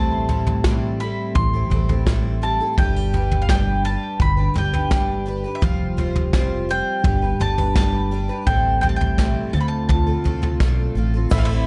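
Stirring and yearning, this indie folk excerpt at 84 BPM in A minor sets a bright, double-strung mandolin melody with digital delay over fingerpicked jumbo guitar with audible finger squeak, a shimmering octave-doubled twelve-string, growly pizzicato upright bass and an up-front soft brush kit with dark cymbals, moving through Am7, G, Fsus2 and Dm7 before a woody upright piano, floating distant strings, a twangy banjo and a grainy shaker join at 11.3 seconds as the arrangement builds.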